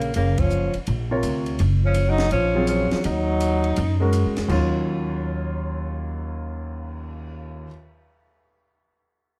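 Hypnotic and cool, this brief modal jazz fragment swings over an Ebm9 chord, with a band accent at 0.3 seconds as a breathy, subtoned tenor saxophone carries the melody in plate reverb and a mellow trombone sings a second line beneath it until 4.1 seconds. Woody pizzicato upright bass sits up front alongside a compact cocktail kit that sounds dark and smooth, with its high-tuned snare, punchy kick, ride, hi-hat and crash. A concert grand piano enters at 1.1 seconds with deep bass and audible action noise, its accompaniment spanning a broad register.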